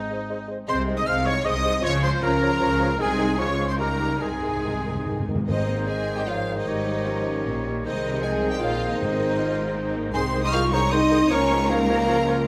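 A rich, focused violin section carries the melody over a mellow horn bed, with clear oboe, hollow flute, dark clarinet and a lush second violin line supplying second lines, while warm trumpet stabs, dark bassoon, viola, cello and double bass fill out this cheerful, spirited classical-period orchestral movement in Ab major at 155 BPM in 3/4 with a rubato feel, soft round timpani entering with a fill at 4.2 seconds, all set in a moderate scoring-stage reverb.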